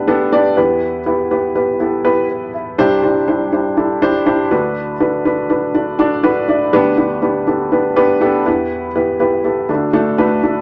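A straight 4/4 pulse at 122 BPM carries this uplifting pop excerpt in G major, where a solo upright piano, dark, woody and intimate with audible action noise, sits up front in a wet studio reverb across C2 to B5, moving through G/D, Em, Cadd9 and D6 with a fill from 5.7 to 6.7 seconds before settling on D.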